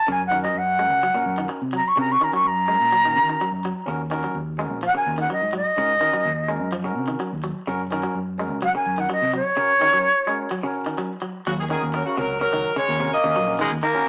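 An airy, mellow jazz flute sits up front and carries the melody from the start, its tongued notes marked by chiff and expressive vibrato, in this defiant, driving afrobeat passage at 126 BPM in Eb dorian. Beneath it, a barky tine electric piano, lightly overdriven through a combo amp, plays accompaniment, while a twangy electric guitar at the edge of break-up plays fingered arpeggios bathed in spring reverb. A round, punchy fingered electric bass anchors the groove as the harmony moves through Gb6, Ebm11, Gb and Ebm7. After the flute solo ends, a tight, pop-style horn section with light vibrato takes the melody at 11.5 seconds, joined by a distant, roomy trombone on a second line, before a raspy, gritty baritone saxophone with scooped notes steps in at 13.6 seconds. The sound is that of a rough rehearsal room with warm saturation and an AM-radio character, and the clip is cut from a longer piece.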